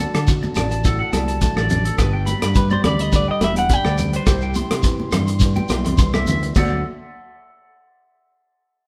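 Carefree and joyful, this short highlife guitar band passage moves in a straight 4/4 over a D, G, C chord cycle that returns to D at 6.6 seconds. A boxy, fingerpicked nylon-string guitar picks out the accompaniment while a twangy, compressed electric guitar at the edge of break-up spins high arpeggios soaked in spring reverb, and a clean electric guitar solo runs through the opening stretch. A dark, hollow-bodied semi-hollow electric guitar carries the melody from 2.6 to 5.5 seconds. Underneath, a growly, punchy fingered electric bass sits prominently beside an up-front soul drum kit with dark cymbals, a tight kick, hi-hat, rim clicks and crash. Ringing, high-tuned congas sit in the background while a grainy, close shekere adds texture. The band sounds like it is playing live together in a stone room with moderate reverb, giving the whole a lively, warm presence.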